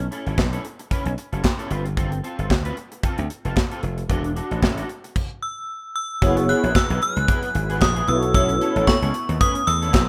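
Early-eighties boogie funk with a danceable, feel-good swing, built on punchy slap bass, an airy acoustic drum kit with handclaps, and a twangy, slightly broken-up guitar riff through ensemble chorus; during a stop at 5.2 seconds a ringing, inharmonic FM bell melody enters, and from 6.2 seconds round detuned synth brass and a very quiet, lush unison pad lift the groove in a short cut from a rough home demo.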